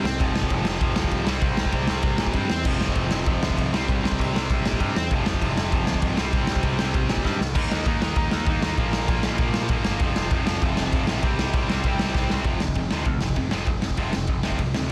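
Two bright, picked electric guitars, one overdriven and sitting in the background and the other tightly distorted, open this rebellious, upbeat punk rock excerpt on a riff, with a growling, overdriven bass amped beneath them and a raw garage drum kit arriving at 0.1 seconds. The harmony alternates between F5 and C5 before moving to Eb5 and Bb5 at 7.6 seconds, with a drum fill leading into that shift and another at 12.2 seconds before the return to F5. The up-front kit has a punchy kick, a medium-tuned snare, crash and ride cymbals, and a gritty, saturated sound with a rolled-off top in a stone room, all held in a dense, heavily limited modern master with little reverb.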